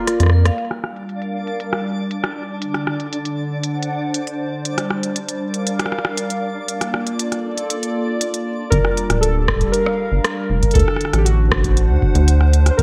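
This cerebral, eerie IDM excerpt opens on a brief flash of warbling lo-fi synth keys, ringing vibraphone and a hollow, flute-like pad over a short fill from a smooth-hatted electronic kit and a rubbery bass blip, then the pad and filter-swept drums carry a veil of twinkling granular shimmer until 8.7 seconds, when a deep, room-recorded kick enters as the bouncy square bass and the gritty, tape-echoed keys melody return over chords moving between Gm7 and D7.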